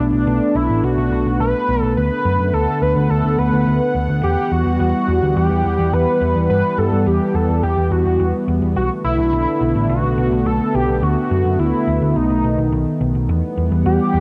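Cinematic and driving, this synthwave excerpt in E minor at 106 BPM sets a thick, nasal detuned-sawtooth unison lead with vibrato, colored by subtle chorus, tape echo and cassette grit, over a mellow, slow-attack analog pad with chorus and a round, dark hollow-body short-scale picked electric bass warmed by tube saturation, all three up front and playing throughout the 14.2 seconds as chords cycle from Bm7 through D6 to Emadd9, with a B7 at 12.2 seconds pulling back to Emadd9, in a light, digitally ambient home cassette recording.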